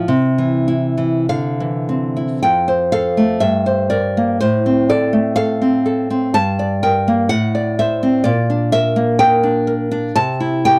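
Set in 2/4 with a free, rubato feel, this sunny, nostalgic excerpt of a romantic solo classical guitar piece features a single up-front, fingerpicked nylon-string guitar ranging from F2 to A5, its tone carrying a touch of finger squeak in a dry, close 1970s-style studio sound with light reverb, moving from an opening C chord into a passage that begins on F at 2.4 seconds and drifts through Gm and D7/A before coming to rest on C.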